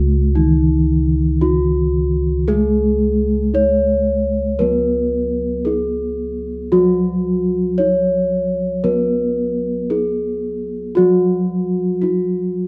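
A bronze metallophone carries the melody up front, its ringing, mellow tone struck with padded disc mallets, while a second metallophone in paired tuning adds an airy, shimmering accompaniment beneath it. Bossed gongs supply a round, beating bass, and the three parts play together throughout this short excerpt of about 12.7 seconds. The Javanese gamelan piece moves at a slow, serene 57 BPM in straight 4/4, with light reverb.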